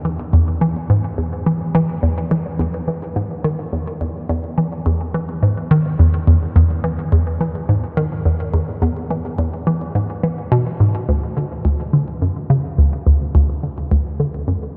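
In a straight 4/4 at 106 BPM, this expansive, luminous ambient fragment features a lone hollow, bouncy square-wave pluck with a fast attack and short decay, playing up front between D2 and E3 through chorus, phaser and delay, set in a huge 8.1-second reverb within a dark production, and shifting from E major to D major at 11.1 s before it cuts off at 14.6 s.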